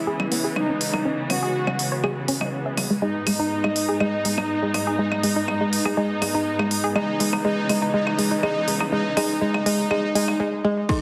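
A woody, wave-folded pluck with chorus and delay spins arpeggios under a filter sweep that builds through this driving, hypnotic melodic techno cut at 122 BPM. It is joined by a bold, brassy detuned synth melody, lush bowed strings holding C#m7 and G#m chords, and a tape-warm drum kit of smooth hats, claves, crash and percussion blips from 0.2 s. The synths and strings pump beneath a lush hall reverb and a heavily compressed radio-style sound until an eerie FM bell and a punchy, up-front kick land at 10.9 s.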